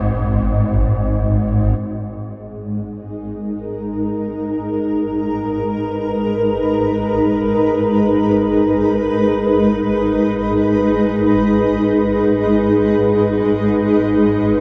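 Dark ambient drone in free time, unsettling and cavernous, heard as a passage cut from a longer piece and set in a vast, echoing cathedral space. A swarming, detuned low drone sounds from 0.0 seconds, begins fading in at 1.8 seconds, and evolves with tense, granular sustain. At 2.7 seconds a cloudy, full-bodied granular pad enters up front with slow-blooming sustained chords, blurring into the long reverb until the close at 14.6 seconds.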